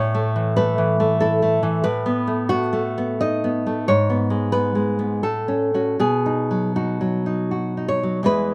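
Romantic solo classical guitar in a rubato 3/4 at 77-96 BPM, this nostalgic, tender excerpt features a dark, up-front, fingerpicked nylon-string guitar spanning E2 to D#5, moving from A through B7/A and G#madd11 to F#m/A before settling on B at 6.0 seconds, captured dry in an open-air recording.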